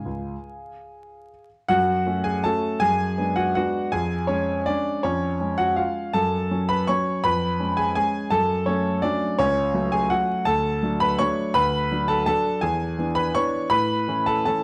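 A waltz in 3/4 with a rubato feel, moving between roughly 138 and 175 BPM, gives this short classical cut from a longer piece a playful, elegant character. A solo grand piano carries everything, its warm, present tone sitting up front with a long sustain and ranging from C#2 to C#6. The music opens on a brief C# before settling into F# minor at 1.7 seconds, passing through darker half-diminished and dominant colors around the home chord. At 10.5 seconds the harmony brightens toward A major, moving through D, B minor and E7 before arriving on A. Close, detailed microphones capture the instrument in a moderate recital hall reverb, while a layer of vinyl crackle adds an aged patina.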